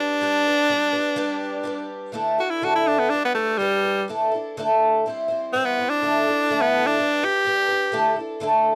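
An edgy, punchy tenor saxophone with pop-style vibrato plays the melody and takes a forceful solo from 2.1 s in this hopeful, jangly rock fragment at 125 BPM, backed by a shimmering, octave-doubled picked twelve-string acoustic guitar with fresh strings, a boxy tone and audible finger squeak, circling G, Dsus2 and C in a dry, close 1970s-style studio sound with both parts up front.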